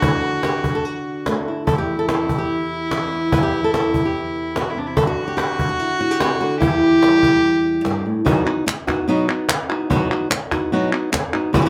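A moderately reverberant studio captures this dramatic, intense flamenco passage, cut from a longer piece, where an up-front fingerpicked flamenco guitar carries the melody through a plate reverb over D and E minor chords, a floating, softly bowed solo violin holds a pure second line until 8.0 s, a woody cajon with faint snares keeps time throughout, and crisp, dry palmas hand claps join at 8.5 s, just after the harmony shifts to B.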